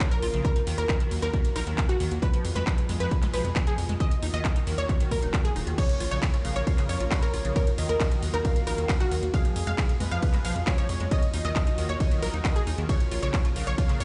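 A punchy, tape-colored electronic kick sits up front in straight 4/4 at 135 BPM, joined by a layered techno kit of handclaps, metallic hi-hats, ride and crash cymbals in this bittersweet, emotional uplifting trance passage in Eb minor, cut from a longer piece. A tight, driving sequencer bass enters at 0.2 s with a sawtooth-and-square filter pluck, while a squelchy, resonant liquid acid bass plays arpeggios in the background with subtle chorus and dub echo. The melody comes from a lush, full-bodied detuned unison pluck with delay, shadowed by a round analog pluck carrying chorus, a noise layer and dub echo. Beneath them, a bright supersaw pad holds sustained chords with a slow attack and long release, moving through Ebmadd9, Fdim and Bbm, and nearly every synth part breathes with sidechain pumping. At 5.8 s a velvety, mellow synth lead with vibrato, chorus and digital delay adds a second line, and the whole mix rings out through a large studio reverb, as if played on a big sound system in a bare room, with a rolled-off top end.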